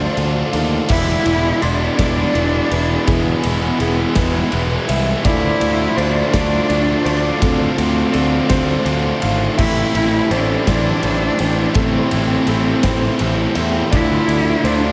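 Post-rock in A minor at a slow 55 BPM in 6/8, this cathartic, cinematic passage cut from a longer piece sets a distant, vibrato-laden bowed cello melody with diffuse ambient delay over a very quiet, reedy pedal harmonium and a soft, felt-muted upright piano whose background arpeggios carry audible action noise and the same ambient delay. An up-front, compressed fuzz guitar riff and an overdriven, fuzz-edged picked electric bass drive the weight, joined at 0.9 s by an overdriven electric guitar riff set further back, while a big acoustic rock kit with a punchy kick, medium-tuned snare, crash and ride enters at 0.2 s in a bright stone room. The dreamy mix is soaked in a lush hall reverb as the chords move from Dm7 to E7, back to Dm7, then through Am7 and home to Dm7.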